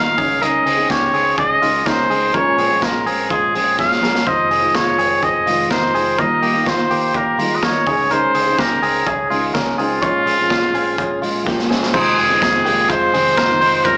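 Heard through a club PA with a small-speaker sound and club reverb, this wistful, bittersweet jangly indie pop excerpt at 125 BPM in F minor sets a clear, up-front trumpet melody with light vibrato and scooped notes over full-bodied fingerpicked acoustic guitar, twangy clean electric guitar arpeggios with slapback echo, a round, dark muted bass sitting in the background, and a gritty, boomy garage drum kit entering at 0.2 seconds, with drum fills at 3.8 and 11.5 seconds leading into a new section at 11.9 seconds.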